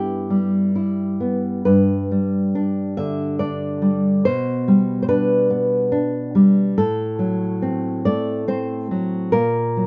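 A passionate, melancholic romantic piece for solo classical guitar in a rubato three-beat lilt: a full-bodied, thumb-plucked nylon-string guitar with fresh strings sits up front through this 9.9-second excerpt, its harmony drifting from G through a diminished chord to F#, all wrapped in light reverb and a dark production.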